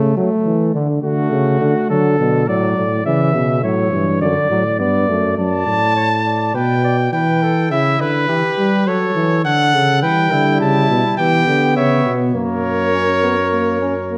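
A wet recital-hall reverb surrounds this lively, stately classical brass canzona in D major, which moves at 103 BPM in a straight 4/4. An up-front bass trombone of mellow tone anchors the bass throughout, and a close-miked trombone plays accompaniment. A warm, punchy flugelhorn with a smooth top and light vibrato enters at 1.0 seconds as the second line. At 5.4 seconds the trombone drops out and a bright, up-front trumpet takes the melody with light vibrato, before the trombone returns at 10.0 seconds in this section cut from a longer piece.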